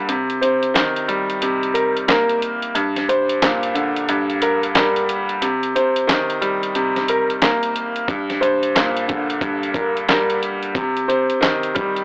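A dry, gritty recording with an AM-radio character frames this reflective boom-bap hip-hop excerpt at 90 BPM in 4/4, its 16ths swung, with a break running until 8.1 s over a Cm7 to Gm progression that settles on Cm. A sampler-style, compressed soul drum kit sits up front with a thumpy kick, fat snare, hi-hat and handclaps, while a bright, polished grand piano with a cassette-tape tint plays low accompaniment between G2 and Bb3. From 0.4 s a woody, intimate upright piano carries the melody in a narrow Bb4 to C5 range, its vintage tone showing audible action noise and long sustain.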